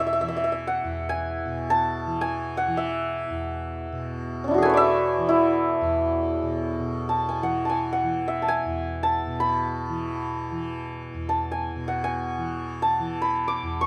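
A hammered, ringing santur sits up front carrying a radiant, devotional Hindustani classical melody over a softly plucked, buzzing tanpura drone in this brief fragment of a longer performance, bathed in light reverb.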